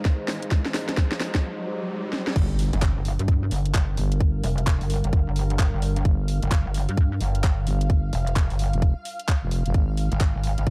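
Bouncy and aggressive, this bass house excerpt runs at 130 BPM in 4/4 with a swung sixteenth-note feel, set in G phrygian and tuned slightly below standard pitch. It opens with a short build-up over an Ab chord, where a drum fill, a rising sweep and a swell from the background effects lead through a brief break into the drop at 2.4 seconds, marked by an electronic impact as the harmony moves to G minor. An overdriven, tight electronic kick sits up front, joined by a layered garage kit of crash cymbal, handclaps, hi-hat and a cracking snare, also overdriven. At the drop, a growling, thick FM bass with tube saturation arrives, and a heavy, detuned, pulsing pluck wobble bass enters at 2.7 seconds, both up front and pumping against the kick. Behind them, an airy, evolving sawtooth pad with chorus holds sustained chords, and a cloudy, blurred granular pad with its own reverb adds a bright, evolving texture, both pumping in the background. 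The production is dark and dry, and the harmony returns to Ab near the end.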